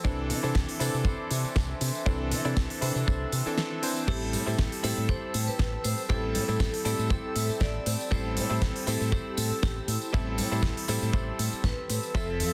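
A lightly swung 119 BPM groove in A minor, driven by a dry, tight kick up front and a fat-snared, crisp-hatted electronic pop kit joining at 0.3 s with a background tambourine, sets up this sensual, cosmic nu-disco excerpt, where an envelope-filtered fingered bass and a clangy, cutting electric grand piano with slapback echo carry the harmony over a dark, reedy chamber string section pumping in the background, a compressed clean electric guitar riff drenched in lush chorus adds a fill at 6.6 s, and a metallic, ringing hard-mallet vibraphone melody with fast motor vibrato and analog delay enters at 4.1 s, all in a dense, heavily limited modern master with small-room ambience.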